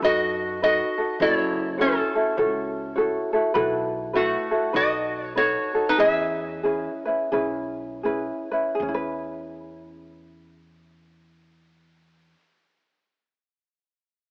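A languid, sunny Hawaiian tune opens at once with a lap resonator guitar carrying the melody, a ukulele accompanying and an upright bass underneath, all in E major with a swung 4/4 feel between 77 and 102 BPM. The resonator guitar sits up front, played with fingerpicks and a slide, its acoustic tone metallic and nasal with a cassette-tape colour. Beside it, the mellow, thumb-plucked ukulele is also up front, light and gently tape-tinged, while the pizzicato bass on gut strings gives a woody, dark, thumpy low end. The harmony moves from B7 through F#m7 and B7sus4 before settling on E6, and the pace slows from 3.6 to 8.8 seconds. The guitar stops at 8.0 seconds, leaving ukulele and bass to carry a short closing passage in light reverb and studio ambience. The whole fragment, cut from a longer piece, has the hazy character of a home cassette recording heard through an AM radio.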